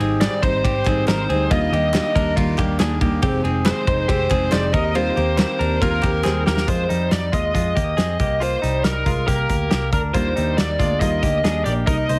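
Jangly indie pop at 139 BPM in Eb major, bright and nostalgic, built on a loose drum kit with a punchy kick and dark cymbals, a round, foam-muted picked bass, and a twangy, direct-recorded clean electric guitar playing arpeggios over chords such as Abmaj7, Fm7 and Cm7. An overdriven, biting lead guitar carries the melody up front, while a fingerpicked steel-string acoustic guitar adds fresh-stringed accompaniment, dropping out at 6.7 seconds after a drum fill and returning at 10.1 seconds. A crisp, distant group handclap sits very low until 6.3 seconds, all within light small-room reverb and a heavily compressed, radio-like sound in a short cut from a longer piece.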